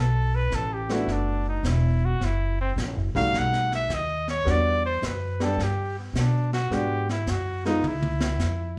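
Recorded live in one room with a moderate large-studio reverb, this short cut of cool, late-night small-group swing and bop in E minor at 107 BPM sets an up-front trumpet, with vibrato, scooped notes and a smooth top, on the melody over dark, woody pizzicato upright bass, a vintage brush kit with a punchy kick and a rolled-off top that closes on a fill at 7.8 seconds, and a warm, short-sustain upright piano accompanying from 0.9 seconds.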